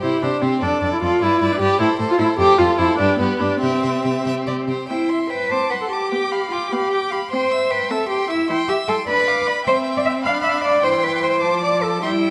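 Restless and urgent, this quick classical-period string quartet excerpt in C major moves at 100 BPM in a rubato 6/8, with a focused, close first violin carrying the vibrato-laden melody over a smooth, even second violin line set further back, while an expressive viola accompaniment and a rich cello bass sit up front with sliding portamento, all bowed by single players in a moderate scoring-stage reverb, shifting from its opening section into a second at 4.9 seconds.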